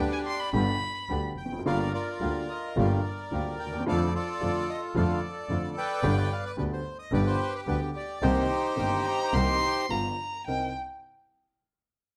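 A reedy bandoneon carries the melody up front, bathed in plate reverb, until 9.9 seconds, while a second, darker bandoneon adds smooth stabs in the background. This tense, melancholic tango in C minor moves at 109 BPM with a rubato feel, cut from a longer piece. A close, expressive bowed violin sings a soft-attacked second line with vibrato and portamento, briefly at the start and again from 8.8 seconds, over a woody, slightly detuned upright piano and a focused, bowed double bass, all set in a moderate studio room.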